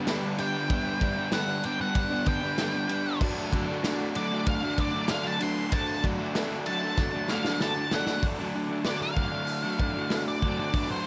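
A raw, lightly reverberant garage rock excerpt, rowdy at 96 BPM in D major, with a punchy, mid-forward acoustic drum kit in a small room sitting up front alongside a crunchy, double-tracked overdriven rhythm guitar whose riff carries a touch of spring reverb over a shift from G to D. A dark octave-fuzz lead guitar plays a picked solo melody until 8.2 seconds, while a reedy vintage combo organ with light vibrato holds overdriven chords in the background. A drum fill from 7.0 to 8.2 seconds leads into a new passage before the piece cuts off.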